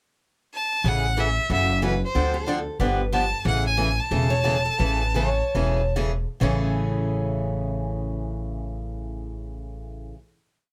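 A clear, focused bowed violin with vibrato leads this lively, charming acoustic string swing piece in A major at 129-185 BPM, playing a motif-based melody over a boxy parlour guitar's short four-to-the-bar rhythm accented on two and four, a growly, woody upright bass playing a two-beat root-and-fifth line, and a bright dreadnought guitar adding answering phrases in the melody's rests from 2.3 seconds, as the band slows from 3.4 seconds and settles on a final chord from 6.4 seconds in light reverb.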